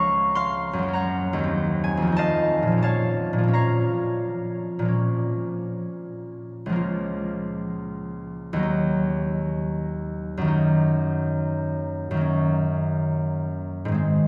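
A concert harp carries this short classical solo on its own, sounding warm, ringing and up front as it spans a range from Db2 to Db6. The mood is serene and graceful, set in Bb minor and 3/4, with a rubato feel that lets the tempo drift between 85 and 109 BPM. The fingerpicked opening moves through Bbm/Db, Gb, Cdim/Eb and F7 before settling on Bbm at 2.8 seconds, and the opening phrase returns at 4.9 seconds. From 8.7 seconds the harmony leans toward Ebm, closing on Ebm7/Gb. A cathedral reverb with a long 4.9-second decay surrounds the harp, and this brief passage, cut from a longer piece, lasts just over 14 seconds.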